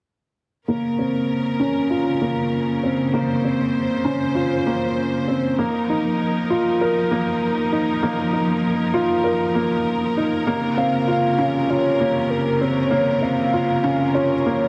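Set in a straight 4/4 pulse, this hypnotic, cinematic electronica excerpt opens at 0.7 seconds with a felt-muted upright piano repeating a riff, its soft, boxy tone carrying audible action noise. The piano sits up front, shaded by a low-pass filter and tape echo, with a filter sweep running across its whole span. Alongside it from the same moment, a bright symphonic string section holds sustained chords with biting, lush vibrato, moving from Bbmadd9 to Ebsus2 and back. At 10.8 seconds a velvety synth lead enters with a melody, its detuned, sub-octave voice colored by chorus and a cassette-tape character. A moderate concert hall reverb gives the parts a spacious, immersive setting until the piece is cut at 14.7 seconds.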